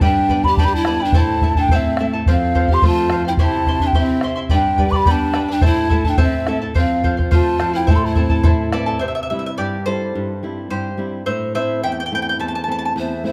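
A large wooden quena carries the melody in this festive yet wistful Andean folk excerpt, its end-blown tone breathy, mellow and hollow, with vibrato and a soft attack that sounds slightly distant. A bamboo pan flute plays a second line beneath it, brighter, with a soft chiff and lifted highs. The fingerpicked charango adds a shimmering layer of double strings, some octave-doubled, while an acoustic flamenco guitar supports from below in a fingerpicked style. A round, close bombo sits up front as the most prominent part, driving the straight two-beat feel until both winds and drum drop out just before 9.0 seconds. The charango then takes a solo over the guitar, and the two winds return briefly at 13.0 seconds, all captured with detailed close microphones in a moderate recital-hall reverb.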